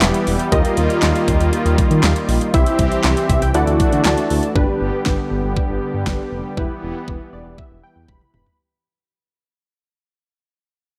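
A straight 4/4 pulse at 119 BPM drives this upbeat yet wistful synth-pop fragment in G mixolydian, where an up-front, overdriven electronic kit of knocking kick, fat snare, metallic hats, handclaps and toms sits over a smooth, detuned sawtooth synth bass. Round, chorused analog keys provide the accompaniment and add fills from 3.0 seconds, while a brassy, bold pad with chorus and vibrato holds evolving, bright chords through a progression of Em, Ebadd9, C, Dadd9, G and Em. A fade-out begins at 4.6 seconds as the second section starts, and a drum fill closes the passage at 8.1 seconds under a touch of light reverb.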